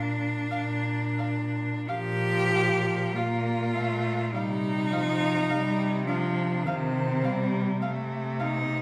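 Yearning and melancholic, this brief classical excerpt for cello ensemble in Bb major moves at a slow, rubato 42-53 BPM in 4/4, its harmony shifting from Bb to F7/C at 4.3 seconds. An intense, clear cello carries the up-front second line with a smooth top and vibrato, while a rich bowed cello holds the bass with portamento and a distant, expressive cello enters at 1.9 seconds with accompaniment. Above them, a soft-attacked cello sustains a high F5 melody in the background, all bathed in the lush reverb of a recital hall.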